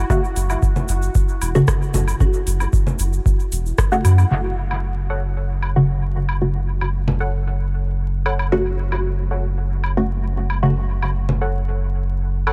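Vinyl crackle and light digital ambience frame this hypnotic, nocturnal dub techno excerpt in F# minor, moving at 114 BPM in a straight 4/4. Up front, a soft, round sub bass built from triangle and square waves pumps against the sidechain throughout, while a muted, detuned chord stab of sawtooth and pulse waves plucks through a phaser and trails dub echo from 0.1 s to 10.7 s. Opening the piece, a tape-warm electronic kick sits forward beside a booming analog drum machine with metallic hats and rim clicks, both re-recorded in a small room, along with a grainy, bright tube shaker heard close and dry. Woodblock and congas, layered and echoed, carry on past them, and a resonant, bubbling texture of randomly stepped filters drifts with chorus and reverb until the harmony settles on F#m at 4.3 s. From 5.1 s a crisp, mellow wavetable stab in unison enters higher up, decaying into dub echo to the end.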